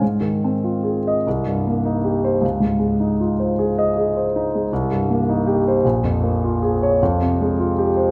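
Dreamy and luminous, this short passage of impressionist classical solo piano drifts in a slow 6/8 at roughly 48-54 beats per minute, counted in dotted quarters, with a flexible rubato feel in A-flat major. A single concert grand carries the whole 8.1 seconds, its tone warm and up front, with deep bass and long sustain reaching from Bb1 to Eb5. The harmony glides through colourful chords, opening on Ab6 and moving through Cm7 to a lingering Dbmaj9 at 2.4 seconds before passing back through Cm7 and Bbm7. It comes to rest on an unsettled Fmadd9 at 7.0 seconds, leaving the phrase open as part of a longer piece. A moderate scoring-stage reverb with a two-second tail gives the instrument a spacious, glowing halo.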